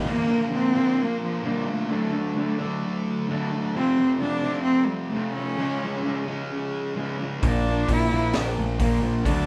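Quiet-loud alternative rock at 131 BPM in a half-time feel, cathartic and bittersweet, with a dark, slightly broken-up guitar playing fingered arpeggios beneath a bright, compressed fuzz guitar riff while a rich, bowed cello carries the melody up front with smooth vibrato. At 7.4 s a growling, round overdriven bass and a raw garage drum kit enter together; the kit sounds distant and roomy, with a high-tuned snare, a boomy kick and a gritty, rolled-off top. The harmony moves through Bb, D, F and C# before returning to Bb, and light reverb gives the feel of a band playing live in one room.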